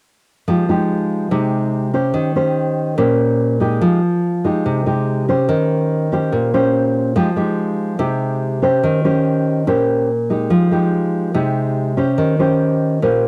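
A dry, close 1970s-style studio sound with light reverb and small-room ambience frames this intimate, melancholic bossa nova cut from a longer piece, where a warm, up-front, thumb-plucked classical nylon-string guitar accompanies at 143 BPM in F minor, alternating Fm9 and Eb6 chords from 0.5 to 13.3 seconds.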